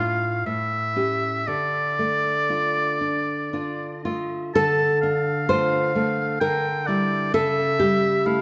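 A moderate recital-hall reverb surrounds this short passage, whose top end is gently rolled off. It is a romantic duo for oboe and classical guitar in a three-beat metre, played with a free, rubato feel and a yearning, solemn mood. The bright oboe carries the melody in a classical style with light vibrato, and a touch of tape echo trails its phrases as it sits up front. Beneath it, the nylon-string guitar plays a fingerpicked, deep accompaniment, equally close and present, and both instruments sound from the first moment to the last. The harmony moves from A7 to Dm early on, and a second phrase begins at 4.5 seconds, passing through Em7b5/D and A7/C# before the fragment breaks off at 8.4 seconds.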